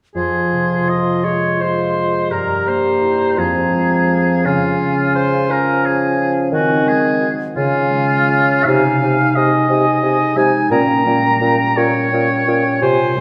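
A thumb-plucked, ringing harp opens this slow, melancholic and yearning romantic orchestral excerpt in F minor, its arpeggios joined at 0.2 seconds by a clear, up-front oboe with light vibrato, a pure straight-toned flute, a mellow clarinet and a dark, distant bassoon accompaniment, all moving with rubato in 6/8 at 57 BPM through chords from Fm and C7/G to Db and Gdim/Bb inside a wet scoring-stage reverb.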